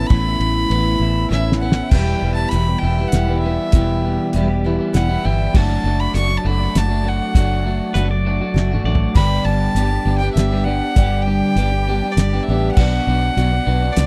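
A dry, close 1970s-style studio sound with little reverb frames this nostalgic, open-road folk rock and heartland rock, cut from a longer piece and moving at 100 BPM in a straight 3/4 through Aadd9, Em, D/F#, G and Bm. An earthy, boxy fiddle carries the melody over a shimmering, octave-doubled twelve-string acoustic guitar, a slightly broken-up electric guitar riff with subtle chorus through a small old amp, a round, foam-muted fingered bass, and a very quiet tonewheel organ with key click and slow rotary. The up-front, cloth-damped drum kit, with its fat snare and rolled-off top, plays a fill at 1.3 seconds, and a bright, twangy pedal steel guitar adds a brief second line at 7.9 seconds.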